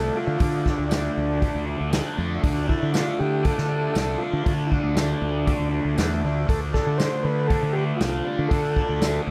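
A reedy, overdriven combo organ carries the melody with light vibrato and analog delay in this mysterious, trippy psychedelic rock excerpt in D minor, moving at 118 BPM over a steady Dm. Beneath it, a double-tracked fuzz guitar riff with phaser and delay and a growly, punchy fuzz fingered bass drive the groove, while a very quiet, flute-like tonewheel organ holds sustained chords through a slow rotary speaker with audible key click. A vintage drum kit with a tight kick and rolled-off top sits up front from 0.4 seconds, a jingly, band-limited tambourine joins in the background at 0.9 seconds, and the whole mix is echo-heavy with a small-room ambience.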